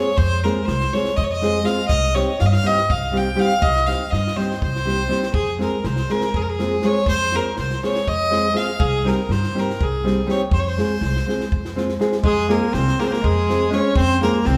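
A straight 7/8 pulse runs at 244 eighth notes per minute, driving this bittersweet, virtuosic Balkan wedding-band piece in F minor, heard as a passage cut from a longer performance. Up front, a single bowed fiddle carries the melody with a clear, earthy tone and light vibrato, while a nylon-string guitar fingerpicks a deep, classical-style accompaniment, finger squeaks and all. Beneath them, a pizzicato upright bass with steel strings gives a woody, thumpy low end, and a compact cocktail kit sits in the background with a punchy kick and a dry, high-tuned snare. The harmony moves between Fm and Cm. At 12.2 seconds a bright, vintage-toned clarinet enters with a soft attack, adding a classical-style second line for the final moments. The whole band sounds set in a reverberant recital hall, its 1.7-second decay lending a churchlike glow.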